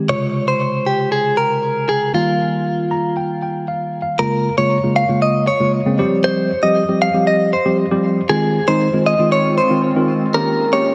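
A dreamy mix soaked in moderate plate reverb frames this driving, bittersweet pop passage at 117 BPM in a straight 4/4. A worn, slightly out-of-tune tine electric piano sits up front with mellow chords and a fill from 2.7 to 4.2 seconds, while a bright, compressed clean electric guitar, recorded direct and picked, carries the melody through a diffuse ambient delay. As the music builds over chords moving from Dbmaj7 through Bbm7 and Fm7, a glassy, ethereal FM pad with a slow attack and ensemble chorus enters in the background at 9.2 seconds.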